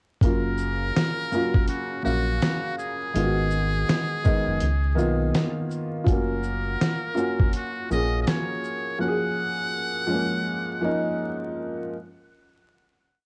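A dusty home cassette recording, with vinyl crackle and a moderate studio reverb, frames this short, dreamy and cosy lo-fi hip hop piece in F# major at 82 BPM, in 4/4 with a swung sixteenth-note feel. Up front, a gritty sampler-style soul drum kit lays down a sparse beat of thumpy kick, medium-tuned snare, shaker and quarter-note hi-hats, compressed and re-recorded in a small room. A round, deep analog bass plays a sparse, sustained line with slides beneath a felt-muted upright piano, whose mellow, intimate drop-2 chords with grace notes repeat like a sampled loop through F#maj7, G#m7, C#13 and back to F#maj7. Over this, a trumpet with a metal mute carries a buzzy, brilliant jazz-style solo built from call phrases with light vibrato. The bass drops out at 8.3 seconds and the drums at 8.8 seconds, leaving the trumpet and piano to carry the piece until the piano's final chord rings out at 11.9 seconds.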